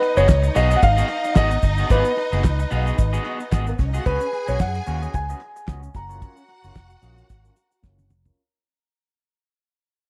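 Glamorous and sultry, this disco excerpt cut from a longer piece sets a warm concert grand piano melody, softened by a low-pass filter and tape echo, over a lush bowed violin section, a twangy, slightly broken-up electric guitar bathed in spring reverb, a round, dark fingered electric bass entering at 0.2 s, a dry, up-front 70s drum kit with fat snare, tight kick and handclaps, and a grainy tube shaker in the background, all moving through G#m7, C#9sus4 and F#maj7 beneath a filter sweep and fade-out that run throughout, with a drum fill arriving at 7.8 s.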